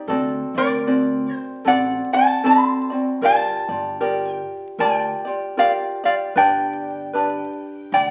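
Hawaiian music in G minor at a relaxed, sunny 76 BPM in 4/4 with a swung eighth-note feel, this excerpt is cut from a longer piece and sounds like a very old 78 rpm record, vinyl crackle and all, set in a wet, large studio reverb. A light, fingerpicked ukulele opens at 0.0 seconds, joined by a dark, woody pizzicato upright bass on steel strings. At 0.6 seconds a metallic, nasal metal-body resonator slide guitar, played with fingerpicks, takes the up-front melody over chords moving from D7 to Gm7 and settling on G as a new section begins at 6.4 seconds.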